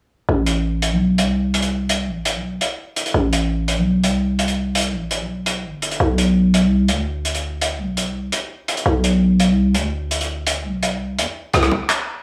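A half-time drum and bass groove in 4/4 carries this tense, cinematic fragment, its crunchy breakbeat kit arriving at 0.5 seconds with handclaps, hi-hat and rim click, sounding dark, gritty and saturated with a rolled-off top. Underneath, a growling 808-style bass with a buzzy sine tone and fast, decaying attack sits up front from 0.3 seconds, and a drum fill lands at 11.4 seconds. A hard-clipped, tape-warm electronic kick drum, high-pass filtered, punches in briefly at 11.7 seconds in a dry, close mix.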